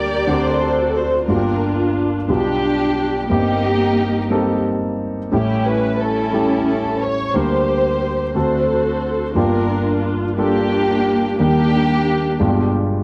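A grand piano with audible action noise and a dark, woody string section sound together from the start, the piano playing a short fill from 0.3 to 1.3 seconds while the bowed, vibrato-rich strings carry a lush melody over its intimate accompaniment in this fervent, soulful gospel passage in G minor, moving in a slow 6/8 at 59 BPM through chords such as Gm7, A7 and Ebmaj7 to a closing G7b9, with both parts up front in light reverb and a dark production.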